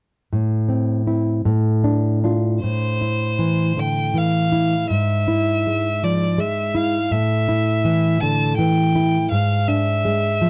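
A rich, smooth bowed violin carries a yearning, solemn melody with even vibrato, entering at 2.6 seconds over a nylon-string classical guitar that opens alone at 0.3 seconds with thumb-plucked chords moving from Am to Dm/A, later passing through Am, E/G# and A5 on the way to E7b9/G#. This romantic duo moves in an unhurried 3/4 with uneven, rubato beats, both instruments up front. The dry, close 1970s-style studio sound suits this excerpt cut from a longer piece.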